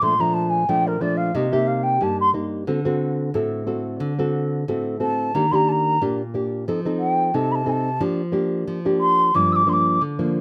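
This sunny, festive samba moves at 90 BPM in a straight 4/4, tuned slightly below standard pitch. A mellow wooden flute carries an airy, unsteady melody with vibrato, a soft attack and a slapback echo until 10.0 seconds, while a classical nylon-string guitar, thumb-plucked with audible finger squeak, supplies up-front accompaniment through chords such as Bbmaj7, Cm7, D7 and Ebmaj7. The dry outdoor recording is cut from a longer piece, and the guitar rings on alone until 10.4 seconds.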